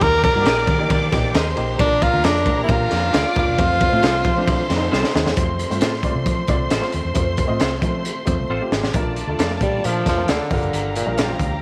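Danceable and warm, this uptempo 1960s-style soul piece at 134 BPM in 4/4 sets a breathy, subtoned tenor saxophone melody up front, with scooped notes and light vibrato, which drops out at 4.9 seconds and returns at 9.6 seconds over a distant, lush bowed violin section. Underneath, a woody, boxy upright piano with a short fill, a dark, round foam-muted electric bass and a gritty, saturated breakbeat kit with a high-tuned snare, tight kick, dark cymbals and a couple of fills drive the groove, while a very quiet, twangy guitar adds bright stabs. The chords move from Eb through Bb and F to Bbmaj7 and Gm7, all under light studio reverb with vinyl crackle and a faint mains hum in this short cut from a longer piece.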